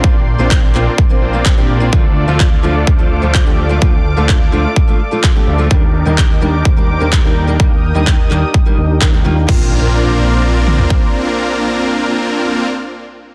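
Festival progressive house with a euphoric, anthemic lift, cut from a longer piece and moving in a straight 4/4 metre. A huge, detuned supersaw riff carries the harmony through Bbadd9, Dm and Ebmaj7, its low-pass filter sweeping over the first 9.5 seconds while delay trails its chords. Beneath it sit a fat, thick analog bass with a moving notch and a bright, warbling vintage pad with chorus, both breathing with sidechain pumping. Tucked in the background, a dark, woody fingerpicked steel-string acoustic guitar on old strings adds delayed accompaniment. The overdriven big-room kit pushes a punchy kick and toms up front, with crash and handclaps further back. The bass and drums drop away near 11.0 seconds as a very quiet electronic impact rings out under the returning Bbadd9, all set in light reverb and a dense, heavily limited master.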